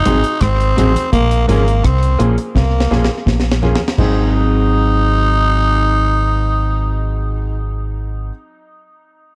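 Laid-back and sunny, this short roots reggae excerpt cuts in mid-groove over a simple move from Ab7 to Bbm7 and back again. A raspy, growling tenor saxophone carries the melody up front, its gritty tone touched with light vibrato and trailed by dub echo. Beneath it, a round, deep fingered electric bass sits prominently, while a clean, fingered electric guitar comps in the background with its own dub echo, and a second, very quiet guitar plays a low riff. A clear, worn baby grand piano adds open, long-sustaining stabs from further back. The dry, dark drum kit, with its high-tuned snare, tight kick and rolled-off top, wears a slapback echo and plays a fill from 2.6 seconds before dropping out at 4.2 seconds, and the ringing, low-tuned congas stop at about the same time, all inside a light reverb.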